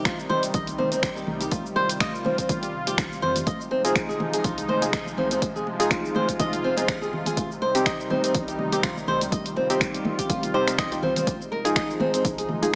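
A fingerpicked flamenco guitar sits up front in this driving, earthy afro house excerpt at 123 BPM in F minor, its arpeggios carrying digital delay and sidechain pumping over a smooth, evolving sawtooth pad with chorus that sustains chords moving between Cm/F and Fm7. A punchy layered electronic kick and a deep house kit of finger snaps, hi-hat and shaker drive the 16th-note swing, while bright, high-tuned congas played with soft hands and a round sine sub bass sit in the background. From 3.8 seconds, detuned analog keys add mellow, decaying stabs with a filter sweep, chorus and delay, all heard through light reverb and digital ambience with a small-speaker sound.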